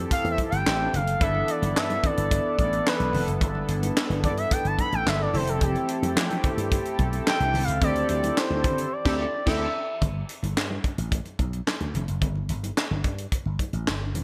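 Danceable and feel-good, this early-eighties boogie funk cut moves at 109 BPM in a straight 4/4, sitting in G mixolydian before settling into G major at 10.0 s. An expressive portamento lead carries the melody as an analog synth solo, its smooth sawtooth tone shaded with vibrato, chorus and digital delay, over chords moving from Fmaj9 to G69, back to Fmaj9 and on to D9sus4. Beneath it, a glossy chorused polysynth supplies accompaniment while a lush, thick unison pad of detuned saws and squares, treated with phaser, holds sustained chords very quietly in the background. Up front, a growly, punchy slap bass runs through an envelope filter, joined by a tight funk drum kit with a high-tuned snare, handclaps, hi-hat and crash under gated reverb, plus very quiet, ringing congas. After a band accent near the end of the solo, the synths drop out by 10.0 s, leaving bass, drums and congas to carry on until 14.2 s in a bright 1980s-style digital production with a light small-room ambience.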